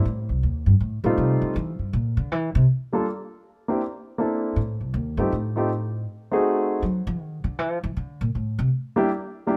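An upright bass and a grand piano begin together in this relaxed, swinging jazz fragment of a longer piece, with the pizzicato bass taking the solo spotlight in a woody, growly tone up front while the intimate piano carries a mid-register melody with long sustain, audible action noise and a touch of plate reverb. The chords move through F7, C7 and F#dim7, with rootless voicings, a brief stop in the harmony at 3.1 seconds, and a light, natural room around both instruments. The bass drops out at 8.7 seconds, leaving the piano to ring on until 9.6 seconds.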